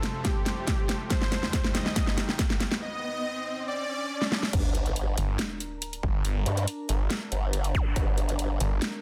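A dense, heavily limited modern mix with light digital ambience carries this heavy, aggressive half-time wobble dubstep excerpt, in which a smooth soft supersaw melody with digital delay, a lush low-pass-filtered supersaw pad, a lo-fi warbly tape-like pad with chorus, and a punchy electronic kick alongside a dubstep drum kit with a huge snare and metallic hats build over background riser, sub drop and zap effects until the drop at 4.5 seconds brings in a chorused formant-sweep wobble bass and, from 5.2 seconds, a growling, distorted snarling saw bass.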